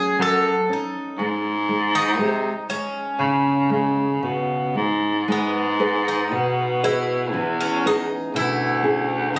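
A fado-style ballad at 59 BPM in 2/4, mournful and passionate, moving with a rubato feel and settling into G# minor from 5.3 s in this fragment cut from a longer piece. An up-front Greek bouzouki carries the melody with bright, metallic double strings and some octave-doubled courses, over a small, dark, fingerpicked nylon-string guitar accompaniment. A mellow baritone saxophone enters at 0.2 s to take the bass line with vintage, jazz-style vibrato, soft attacks and scooped notes, all set in a moderate recital hall reverb with a phone-in-the-room intimacy.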